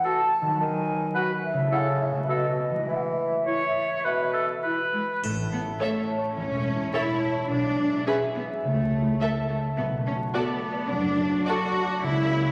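Playful and mischievous, this whimsical cinematic film cue at 106 BPM in E major opens with a hollow flute group, a soft clarinet, an oboe up front and a warm bassoon over ringing, fingerpicked harp arpeggios that carry through to the end. A lush, focused cello section enters just before the shift to A major at 5.2 s, where a smooth double bass section joins it on the bass and a dry triangle sounds briefly. From 5.8 s two violin sections in the background and a rich viola section fill out the harmony, all in a reverberant scoring-stage space with vinyl crackle, cut from a longer piece.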